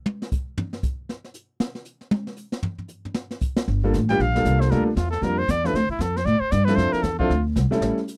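A swinging brushed kit with a punchy kick opens this cool small-group jazz excerpt alone until about 3.7 s, when a woody, thumpy pizzicato upright bass and a clear concert grand piano comping over Gm7 and Dm7 join in, followed at 4.1 s by a breathy, vibrato-laden trumpet, all captured in a dry, close 1970s-style studio sound.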